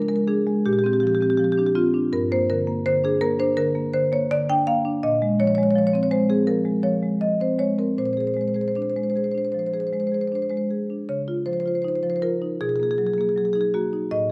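Contemporary classical music for solo marimba, this hypnotic, reflective rubato passage in 4/4 has a woody marimba, played with medium mallets on rosewood bars and set up front, spanning G2 to G5 through rich extended chords such as Bbm9 and Dbmaj9 in a moderate recital-hall reverb, before the excerpt cuts off at 14.3 seconds.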